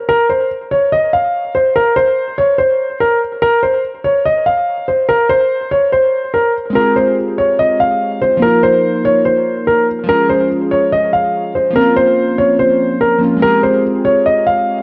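Menacing and eerie, this half-time hip hop fragment in F minor at 144 BPM opens with a mellow, intimate concert grand piano carrying the melody up front, its audible action noise softened by a low-pass filter and delay, before glassy digital keys with chorus, filtering and fast-attack, decaying sine tones join as accompaniment at 6.7 s over a moody Fmadd9, Ebsus2, Db and Bbmadd9 progression in a dark, warm production with light reverb.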